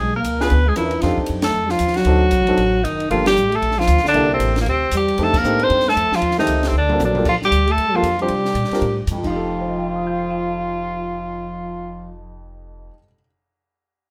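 A moderately reverberant, sophisticated small-group swing-and-bop excerpt features a clear, up-front tenor saxophone with light vibrato and scooped notes carrying the melody over a breathy, whispered trombone second line, a woody, growly upright bass, present baby grand piano accompaniment, and a dry cocktail drum kit with dark cymbals and a punchy kick that plays a fill at 6.7 s and stops at 9.3 s, while the band punches an accent at 1.4 s.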